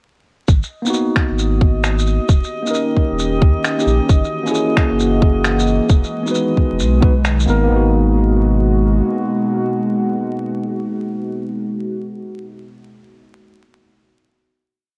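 Light reverb and a digital ambience frame this short, wistful future garage piece, with vinyl crackle running underneath. A deep, round sine sub bass pumps against the sidechain beneath a tight, muffled two-step kick and a skittering, shuffled pattern of pitched-down shaker and finger snaps, giving the groove a swung, melancholic sway. A clean tine electric piano adds sparse, rootless chord stabs trailed by tape echo. A detuned, nostalgic tape-like pad enters at 2.3 seconds, its phaser and chorus drawing it through D#7, F#7 and Emaj7. High above, a glassy texture of drifting overtones holds a single calm note. The beat drops out by 7.7 seconds, and the pad and piano ring on over a closing G#m7 chord.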